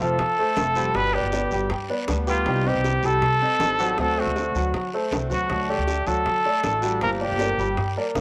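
Moderate spring reverb and a small-room ambience surround this short, danceable Cuban son and guajira cut at 158 BPM in 4/4, moving through F, G, Cm, D7, D and Gm7. A breathy, whispered trumpet sits up front with vibrato and a soft attack, carrying an intimate, vintage pop-style solo melody over a present baby grand piano playing arpeggios and a woody, thumpy pizzicato upright bass on gut strings. Behind them sit a boxy, picked swing-style acoustic guitar and round, low-tuned, saturated bongos that enter at 0.2 seconds, while a raspy, close and dry guiro adds its scrape, all giving the straight groove a warm feel.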